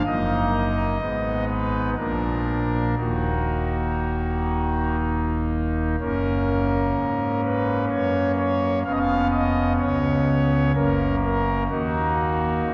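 Classical chorale-style music for solo pipe organ, grave and dark, with thick, romantic foundation stops sitting up front in a resonant church, moving freely in a slow 3/4 at around 58-64 BPM from E-flat minor into F-sharp major at 6.0 s in this excerpt cut from a longer piece.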